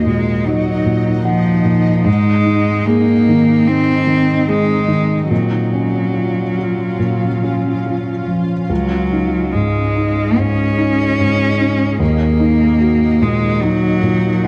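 Unhurried and rubato, with uneven beats, this short neoclassical excerpt feels hopeful and intimate, built on a soft, felt-muted upright piano accompaniment whose mellow tone sits up front with its action noise audible. A rich, bowed cello carries the second line with smooth, even vibrato, while a quieter granular cloud pad holds blurred, detuned chords that swell in slowly and evolve under its own built-in reverb. The production is dark and warm, with light reverb, as the harmony drifts from Ebmadd9 through Ab, Gbmaj7/Bb and Dbsus2 before settling on Ebm at 12.0 seconds.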